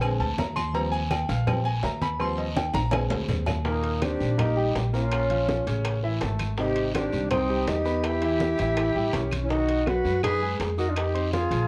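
Danceable and sophisticated, this Afro-Cuban jazz excerpt moves at 164 BPM in a straight 4/4, cut from a longer piece and coloured by a worn, warbling cassette-tape quality with pitch drift and light reverb. A clear concert grand piano with deep bass opens as a solo over the first 3.7 seconds, a drum fill arriving at 2.6 seconds, while a woody pizzicato upright bass sits up front on steel strings. The percussion bed blends ringing low-tuned congas played with soft hands, tight high-tuned cowbell and bongos with a vintage, band-limited tone, metal-shelled agogo bells and timbales in a small room, woody claves, and a raspy guiro in a live room. At 3.7 seconds a dark, breathy tenor saxophone takes the melody with whispered subtone, vibrato and a soft attack, set in plate reverb, as a metal jazz flute carries a second line with lifted highs and an unsteady, airy vibrato. The harmony roams through rich colours such as Bb9, Abmaj7, A9 and B6 before settling on Fm9 near the close.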